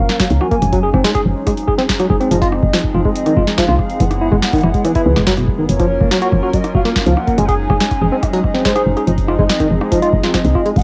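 A barky, bell-like tine electric piano stands out in this glitchy, intricate IDM excerpt, its arpeggios lightly overdriven through a combo amp and trailed by tape echo and plate reverb from 0.2 seconds. Beneath it, a woody FM bass sits loudest in the mix, round and dark with a fast, decaying attack thickened by tube saturation. A warbling, nostalgic lead carries the melody in detuned triangle and sawtooth tones, colored by tremolo, vibrato, ensemble chorus and analog delay. A hollow, flute-like pad holds mellow sustained chords, roughened by 12-bit sampler grit and cassette tape. An electro analog drum machine enters at 0.1 seconds with congas, metallic hats, rim clicks and a punchy snare, joined by a deep electronic kick, both carrying tape coloring. The whole piece has the feel of a home cassette recording in a small room with moderate reverb, its chords cycling through major seventh, suspended and minor seventh shapes.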